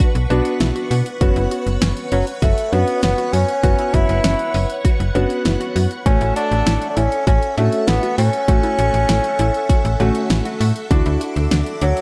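A clear bassoon carries the melody from 2.1 seconds, up front with a soft attack, light vibrato and a classical solo voice treated with delay, giving this melancholic, cool synth-pop excerpt at 99 BPM in 4/4 its singing centre. Beneath it, a slap-like FM bass with a snappy, metallic attack and a decaying digital tone sits up front alongside an electronic, layered pop drum kit with a punchy kick, fat snare and warm hats that sound re-recorded in a small room. A concert grand piano with audible action noise and deep bass adds intimate, natural accompaniment, while a shimmering vintage string machine of violins holds sustained chords through an ensemble chorus. In the background, a lush, detuned unison pluck plays delayed arpeggios with a filter sweep and a moving notch, and a barely audible downlifter sounds only in the first 1.2 seconds. The chords move from Bm through F#sus4 and A6 to Dadd9, wrapped in light reverb and a dark, warm production.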